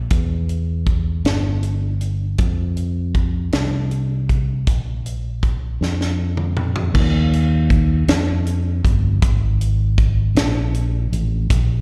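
Hopeful and reverent, this slow gospel piece moves at 53 BPM in a straight 6/8, set in Eb major and tuned slightly above standard pitch. A fingered electric bass carries the low end from the first moment, its round, amped tone sitting between G1 and F2. A tight funk drum kit joins at 0.1 s with kick, snare, hi-hat, toms and crash cymbal, sounding acoustic and natural with a high-tuned snare, a tight kick and a small-room character. Both parts sit up front in the mix, heard as a live gig through the venue's PA with a recital hall's reverb around them. A drum fill from 5.8 s leads into a second section at 6.9 s, and the passage is cut from a longer piece, ending at 11.8 s.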